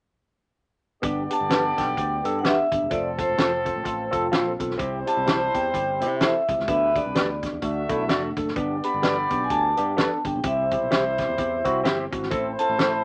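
Set in a moderate club reverb, this uplifting, swung 1960s-style soul excerpt in G major moves at 128 BPM, with a ringing vibraphone melody entering at 1.3 seconds over a fat-snared, punchy-kicked soul drum kit, a growly fingered electric bass, a barky, lightly overdriven tine electric piano with phaser that adds a fill at 3.9 seconds, dark clean guitar stabs from 1.5 seconds, and a distant, roomy horn section with light vibrato, over chords of G, F, C, G, D, G, C and Am.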